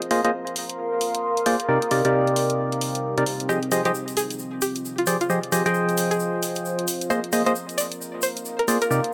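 A moderate plate reverb gives this late-night UK garage excerpt a soft halo, with a hollow, up-front organ stab leading the mix over a deep, warbling ambient pad carrying chorus and its own reverb, while a layered electronic hi-hat ticks underneath at 133 BPM with a bouncy two-step swing. At 3.5 seconds a grainy egg shaker and a twangy, bright resonator pluck with chorus and tape echo join the moody pad and organ, which also runs through chorus and tape echo. The harmony moves through Bb9sus4, Cm9 and Fm9 before returning to Bb9sus4.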